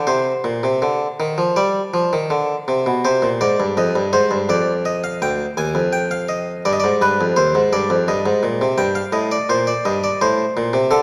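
A solo harpsichord, bright and airy with a single set of plucked strings in the Italian manner, opens this 11-second portion of a baroque-style two-part invention in C minor at 84 BPM in a straight 4/4. The mood is contemplative yet driving, with the instrument ranging from D2 up to Ab5 and shifting at 3.0 seconds into a new section that settles on C minor before moving through darker diminished and dominant harmonies. The harpsichord sits up front, surrounded by a generous recital-hall reverb.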